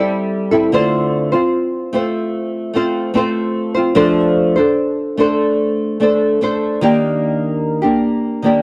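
This indie pop excerpt lasts just 8.6 seconds and carries a nostalgic, sunny mood in a straight 4/4 feel. A lone nylon-string guitar plays throughout, fingerpicked with an acoustic, small, up-front tone that spans from D3 to C5. A subtle chorus and a warbly pitch drift give the guitar a gently wavering character. Tuned to A4 = 439 Hz, it moves through C6, Dm7, F6 and finally Ebmaj7, the last chord arriving at 6.8 seconds. The sound is dry and close, in the manner of a 1970s studio recording touched with a little studio reverb.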